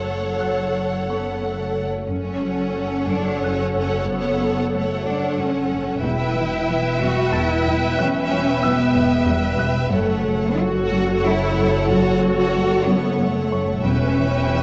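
Uneasy and eerie, this suspense film score fragment in F# phrygian moves in a 92 BPM triple metre, as lush bowed violin sections carry a soft-attacked melody and a second line over a distant viola section, a focused double bass section and a rich cello section, with a dark, mellow baby grand piano murmuring in the background and a second, close cello riff entering at 2.1 seconds, all set in a recital hall reverb and a worn, warbling cassette tape sound that wavers in pitch and dulls the treble.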